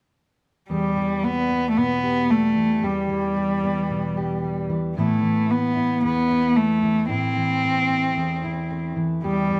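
A folk excerpt in E minor at 112 BPM in a straight 4/4, wistful and yearning in mood, cut from a longer piece. A bowed cello carries the melody from 0.7 seconds, staying in a narrow range from G3 to C4 with a nasal, boxy tone, smooth, even phrasing and vibrato, placed up front. Beneath it, a fingerpicked steel-string dreadnought guitar supplies the accompaniment over a broader span from E2 to G4, its fresh strings giving a dark acoustic sound that also sits up front, though lower in level than the cello. The harmony moves from Em to Amadd9 at 5.0 seconds, and both instruments play together until 9.6 seconds. The two sound like a duo playing live in one room, framed by a moderate stone-room reverb with a 1.1-second decay.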